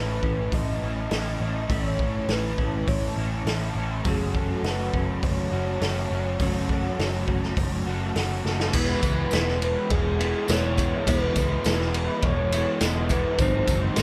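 A mellow, horn-like synth lead with a soft attack, vibrato, chorus and analog delay floats over two overdriven, picked electric guitars (one raw with analog chorus, the other a semi-hollow body set back in the mix with reverse reverb), while a dark, round, foam-muted electric bass and a gritty, punchy small-room drum kit placed up front drive this dreamy, hazy shoegaze and dream pop fragment at 102 BPM in E major, with a drum fill at 8.5 seconds leading into a new section where a jingly tambourine joins in the background at 8.7 seconds.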